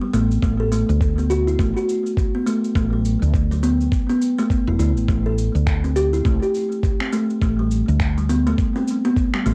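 A lo-fi home cassette sound, wrapped in a damp small-room reverb, gives this short cut from a longer organic downtempo piece its mystical, hypnotic air. At 103 BPM in 4/4 with a lazy sixteenth-note swing in A dorian, a thumb-plucked kalimba opens at 0.0 seconds with short, airy arpeggios, its hollow-box tone roughened by vintage 12-bit sampler grit, tape coloring and an analog delay. A dark, round fretless electric bass with a woody, hollow-body character sits up front beside it, carrying a subtle chorus and a sidechain pumping feel. Gritty, compressed electronic shaker and finger snaps tick along softly in the background, while a thumpy sampler-style kick enters at 0.4 seconds, both sounding re-recorded in a large room. The harmony rests on a rootless Bm7 over A before settling onto A minor at 5.1 seconds.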